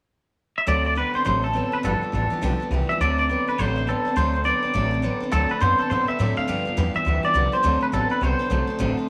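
This rock excerpt moves at a brisk 207 BPM with a swung eighth-note feel, giving it a retro, rollicking mood in D mixolydian. A twangy, compressed electric guitar carries the melody up front from 0.6 seconds, fingered and clean, bathed in lush chorus and tape echo. Beneath it, a picked steel-string acoustic guitar plays a bright, full-bodied accompaniment with audible finger squeak. A second electric guitar, played through a small old amp, adds a slightly broken-up riff in its low register, while an upright bass thumps out a woody, dark pizzicato line with gut-string character. The harmony shifts between D7 and G7, and the whole performance sits in a small room with moderate spring reverb.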